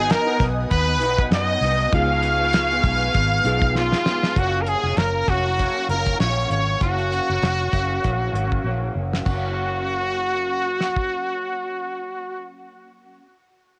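A laid-back 98 BPM groove in 4/4 with a light 16th-note swing sets up this nostalgic slice of indie and bedroom pop in F# major, cut from a longer piece. A damped 70s drum kit with a fat snare, tight kick and dark cymbals carries the beat from 0.1 to 11.1 seconds, with fills at the section turns, while a foam-muted fingered electric bass adds a round, punchy low end. Up front, a brilliant, forceful trumpet sings the melody with vibrato, its tone coloured by ensemble chorus and cassette tape. A slightly broken-up electric guitar through a small old amp plays accompaniment with warbly pitch drift throughout. For the opening 4.4 seconds, a reedy electric piano with fast tremolo and a swirling, detuned sawtooth pad with phaser sit in the background over G#m7 and C#7 before giving way as the harmony settles on F#maj7. Light reverb and the lo-fi character of a home cassette recording give the whole track a hazy, intimate feel.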